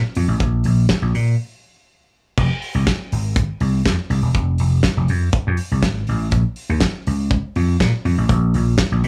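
A straight, driving disco groove pairs a growly, punchy vintage slap bass with a damped 70s drum kit of tight kick, fat snare, hi-hat, crash and dark cymbals, both up front from 0.2 s in a short, danceable cut from a longer piece, with a break from 1.4 to 2.4 s before the second section and a light small-room reverb around the polished, dry drums.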